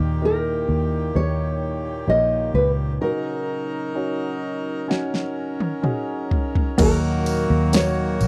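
Emotional and longing, this 64 BPM pop ballad fragment sets a full-bodied, thumb-plucked nylon-string guitar melody with audible finger squeak over warm, long-sustaining grand piano, reedy close-miked accordion chords and a round, punchy foam-muted fingered electric bass, before an overdriven, layered electronic pop drum kit with knocking kick and fat snare comes in with a fill at 4.9 s and a jingly tambourine joins in the background at 6.8 s, within a dry, close 1970s-style small-room recording.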